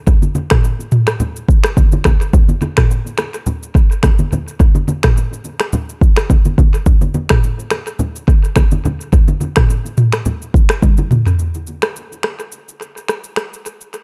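A lightly swung 4/4 groove at 106 BPM drives this sunny, romantic afrobeats excerpt, where an up-front electronic afro-pop drum kit with a deep kick, finger snaps, rim clicks, shaker and toms carries the pulse, bright, low-tuned acoustic congas with a thin skin sit close and dry under a tape echo until 11.3 seconds, and a drum fill from 10.8 seconds leads into a shorter closing passage, all within an echo-heavy digital ambience.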